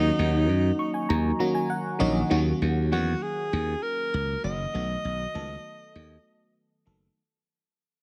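Polished 1980s jazz-funk pop at 99 BPM in a straight 4/4, this nocturnal, slick fragment of a longer piece sets a breathy, vibrato-laden alto saxophone melody with tape echo over glassy, bell-like FM electric piano accompaniment with subtle chorus, which adds a fill from 0.5 to 2.3 seconds, and a growly, punchy slap bass. The harmony moves from Ebm7 to B7 in a small, lightly reverberant room, and the music fades out from 2.3 seconds.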